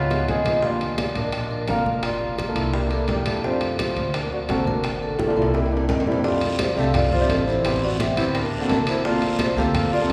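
This lively, sunny Afro-Cuban jazz excerpt sits in a lush cathedral-like reverb that gives the ensemble the glow of a church or concert hall. A soft-mallet vibraphone carries the melody with a mellow, airy shimmer and slow motor vibrato, while a dark trumpet in classical style shades a second line beneath it with light vibrato and a smooth top. A natural-sounding baby grand piano fills in the chords over a woody pizzicato upright bass, moving through rich harmonies such as Ebmaj9, Gm7, C7 and F69. In the background, round low-tuned bongos and thick-skinned congas play alongside ringing metal-shell timbales, and a drum fill arrives around 5.2 s. At 6.2 s a raspy guiro joins as the music moves into a new section that closes on Gm11.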